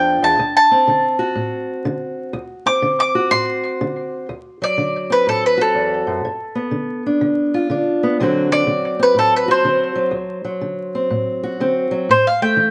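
A bowl-back mandolin with tape echo leads from the opening, its picked double strings warm and up front over a dark, boxy fingerpicked parlour guitar, in this laid-back, gritty cut of acoustic country blues in D mixolydian at 123 BPM with a swung 4/4 feel, where the mandolin's solo runs to 4.3 seconds before the harmony moves from D7 to G7 and back, the duo sitting in light reverb with a layer of vinyl crackle.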